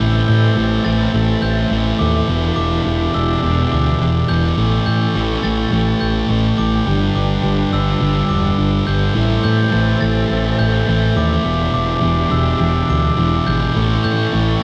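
Hopeful and cinematic, this post-rock passage at 105 BPM in 4/4 sets a dark, up-front fuzz guitar riff over a round, overdriven fingered bass, while a glockenspiel struck with soft plastic mallets rings out high bell-like arpeggios through analog delay and a pure, vibrato-rich flute section holds sustained chords, all bathed in a lush hall reverb that gives a big arena sound as the harmony moves from Am through Em7, A7 and G.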